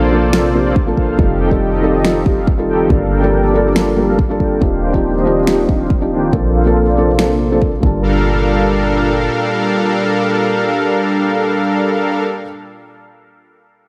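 A light reverb wraps this bittersweet, emotional future bass excerpt in G minor, moving at 140 BPM in a half-time 4/4 feel through lush chords such as Bbmaj9, Gm9 and Ebmaj13. An up-front, smooth detuned supersaw riff runs through a filter sweep until 8.0 seconds, carried on sidechain pumping and dub echo alongside a mellow, felt-muted upright piano with audible action noise, while a breathy pad with chorus and 12-bit sampler grit sustains chords in the background. Beneath them, a boomy 808-style bass with tube saturation holds down the low end until 9.3 seconds, and punchy layered kick, fat snare and electronic finger snaps, re-recorded in a small room, drive the groove up front before dropping out by 7.9 seconds.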